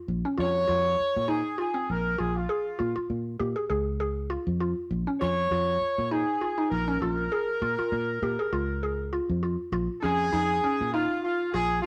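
Afrobeat excerpt in Bb minor at 100 BPM with a swung sixteenth-note feel, defiant and funky, where a dark, round, foam-muted fingered electric bass anchors the low end, a woody, warbling FM mallet-like synth pluck with chorus spins mellow arpeggios, and an up-front warm horn section carries the melody with light vibrato and a smooth top, all captured in a rough rehearsal-room sound with light reverb and tube saturation as the harmony moves from Bbm to Bbm7 at 9.7 seconds.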